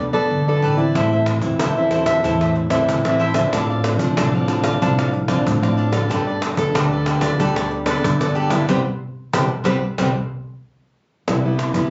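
Captured on a phone in a studio room with a club-style reverb and a dull, rolled-off top end, this festive, sunny samba and choro fragment moves at a straight 93 BPM in C major. Up front, a fingerpicked classical nylon-string guitar and a crisp, picked cavaquinho carry the accompaniment, while a woody, thumpy pizzicato upright bass on gut strings anchors the low end and a snappy cajon with snares joins at 1.0 s. The chords move from Gadd9 through Am and F6, and the band hits an accent from 8.7 s, during which the cavaquinho drops out at 10.1 s.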